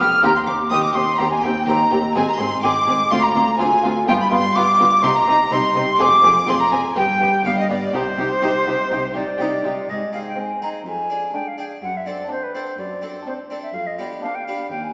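Baroque-style concerto movement in C minor at 125 BPM, dramatic and driving, cut from a longer piece, where an up-front silver concert flute with a pure, crisp-attacked tone and expressive vibrato leads alongside an expressive bowed violin melody, supported by a smooth, even second violin line, a plucked, full-bodied harpsichord, and lush background viola and cello sections, while a double bass section drops out at 9.7 s, all set in a wet concert-hall reverb heard from further back with a small-speaker sound as the harmony turns toward D7/F# and G7/F after 9.9 s.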